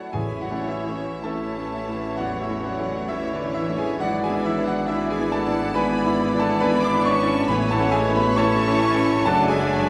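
Set in a reverberant concert hall, this lyrical, lush excerpt from a romantic movement for piano and orchestra moves with a rubato pulse around 52-70 BPM in A major, its chords shifting from A to E7/G# at 4.0 seconds and back to A by 7.5 seconds. A brilliant, up-front grand piano with long sustain carries the melody across a broad range, joined by a quieter violin section that also carries a melodic line, while pure, tongued flutes, a background violin section, a mellow cor anglais and a distant, roomy clarinet weave second lines. Beneath them, very quiet violas and bassoon fill the accompaniment, a dark, tight French horn section holds sustained chords, and a lush cello section, a smooth tuba and a far-off double bass section anchor the bass, with very quiet timpani on A until 8.8 seconds.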